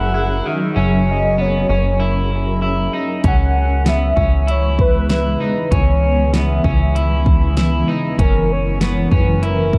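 A plucky analog bass sits up front with a punchy, funky, ring-modulated snap, anchoring this ethereal, hazy dream pop excerpt as the harmony moves from F#7 to C#m7 and back. A velvety, detuned synth lead carries the melody through chorus, phaser and dub echo, while a blurred granular cloud pad holds sustained chords in its own reverb and a slightly broken-up electric guitar picks arpeggios with subtle chorus and dub echo. At 3.2 seconds a produced pop drum kit enters with a punchy kick, fat snare and hi-hat, all set in an echo-heavy mix with light digital ambience.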